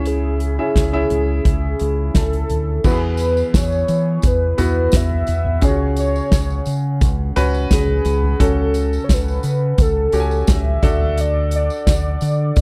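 Bittersweet and earnest, this piano-driven pop fragment moves at 86 BPM in a straight 4/4, tuned a touch sharp to A4 = 444 Hz. A velvety synth lead carries the melody between G#4 and E5, its detuned sawtooth and triangle layers sounding full-bodied and sustained, colored by chorus, vibrato and a filter sweep. Beneath it, a smooth, vintage grand piano spreads its accompaniment from C#3 to G#5, while a dark, round fingered electric bass sits punchy and up front. A soft-mallet acoustic drum kit joins at 0.1 s with a boomy kick, medium-tuned snare, toms, hi-hat and crash, and a jingly tambourine slips in quietly in the background at 2.8 s. The harmony moves from C#m to E, C#sus4, F#m/C# and finally D, all captured in a dry, close 1970s-style studio sound with little reverb.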